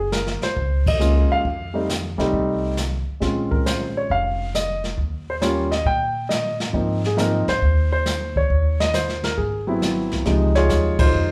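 A reverberant studio sound captures a sophisticated jazz piano trio playing live in one room, swinging at 136 BPM in Ab major, as an intimate, up-front grand piano with audible action noise carries the melody over woody pizzicato upright bass and dark, smooth brushed drums with a punchy kick, hitting band accents at 0.8 and 10.9 seconds in this short cut from a longer piece.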